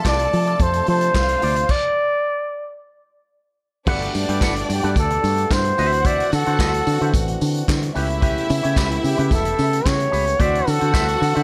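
This celebratory, danceable disco excerpt in G major at 110 BPM opens with a vintage drum kit with a punchy kick and handclaps, a twangy envelope-filtered electric guitar, a lush string section with slapback echo, and a percussive tonewheel organ turning slowly through its rotary speaker in the background. A mellow, breathy flugelhorn carries the melody up front over a bright, foam-muted fingered bass, and the band hits a stop at 1.7 s before returning at 3.9 s on rich chords like Gmaj9, D9 and A9/C#. A jingly tambourine joins at 4.1 s, and the dry mix keeps the parts clear.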